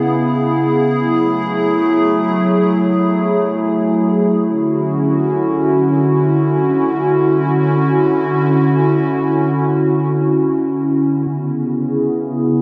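A hollow, flute-like synth pad carries this short, blissful hip hop fragment on its own, its slow-attack tones sustained and mellow up front, colored by chorus, a low-pass filter and analog delay. In free time and D lydian, it drifts through C#m7, F#m9 and a long Dmaj9 before returning to C#m7 at 11.3 seconds, where a filter sweep moves across the pad. A huge ambient reverb soaks the mix, leaving a floating, dreamy haze.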